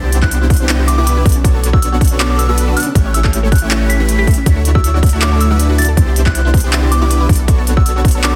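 Future bass at 159 BPM in a half-time feel with a light swing, playful and bright, moving through Cmaj9, Bm9, A7 and Dmaj9 in this brief cut from a longer piece. A boomy 808-style bass and a hard-clipped electronic kick sit up front beside a crisp big-room kit with handclaps and hi-hat, while a huge, thick supersaw riff and a background unison pluck playing arpeggios with cassette-tape colour and dub echo both pump to the sidechain. Above them a soft, pure FM bell carries the high melody through chorus and tape echo, a barely audible downlifter sounds until 1.4 seconds, and the whole mix is dense and heavily limited in a light digital ambience.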